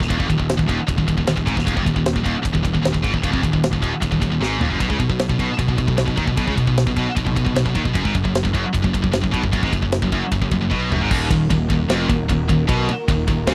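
Heavy and aggressive, this dry, close heavy metal excerpt in a 1970s studio style drives two bright high-gain guitar riffs, one scooped, over a growly fuzz-driven picked bass and an up-front, tight drum kit with a high-tuned snare and bright cymbals whose fills lead into a half-time shift at 11.1 seconds, where a lush, bowed symphonic string section in the background and a very quiet, double-tracked distorted guitar riff join in.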